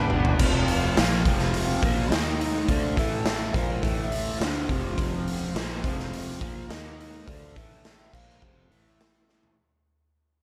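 A straight 4/4 beat at 105 BPM drives this hazy, kaleidoscopic psychedelic rock clip in F major, cut from a longer piece, with a raw garage drum kit opening on a fill at 0.1 s and adding another at 9.3 s. Its punchy kick and medium-tuned snare sound saturated and gritty in a bright, pumping stone room. Up front, a crunchy, double-tracked overdriven guitar picks a flanged riff over a round, foam-muted fingered bass, while a reedy vintage combo organ holds clean chords in the background as the harmony moves among F, Eb5 and A5 through a fade-out in a small room.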